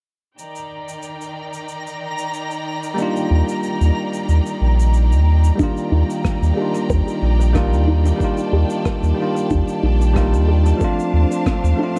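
A lush, bowed string section opens this relaxed, sunny sunset chillout piece at 0.4 s, holding sustained chords from a distant, filtered vantage, joined by a dark, smooth shaker and rim click trailing dub echo. A twinkling granular texture sparkles high in the background with an octave-up shimmer and its own reverb, while a bell-like tine electric piano enters up front at 2.9 s with clean accompaniment that also rings out into dub echo. A deep, round sine sub bass soon settles beneath, sitting mellow and prominent in the mix. At 5.6 s a gritty, thumpy, compressed kick drum arrives alongside a very quiet, soft pluck playing gentle chorused arpeggios. The gently swung groove rests on a major seventh chord before shifting to a minor seventh near the end, all within an echo-heavy mix cut from a longer piece.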